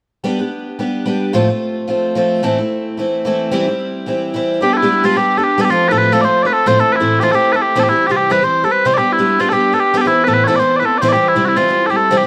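Bright and lively, this excerpt from a longer Celtic folk piece moves with a gentle swing in 4/4. A picked twelve-string acoustic guitar opens alone at 0.2 seconds, its shimmering, octave-doubled sound sitting up front with the occasional finger squeak. At 4.6 seconds mellow small bagpipes take the melody, their sweet, continuous tone placed just ahead of the guitar. Underneath, the harmony circles through G, F over A, A minor and C, with an Amadd9 colouring the final pass. Light reverb gives the pair a touch of space while both stay close and present.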